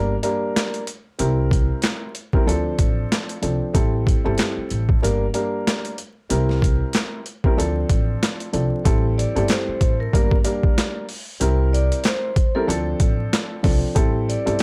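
A dark, moody boom-bap hip-hop excerpt opens with a mellow, intimate upright piano, its action noise audible through cassette-tape colouring and filtering, over a woody pizzicato upright bass, before an up-front, overdriven sampler-style kit of thumpy kick, high-tuned snare, hi-hat and handclaps lands at 0.2 s, and a metallic, ringing vibraphone with slow motor vibrato takes the melody from 9.2 s, all in a dry, gritty hardware sound with vinyl crackle.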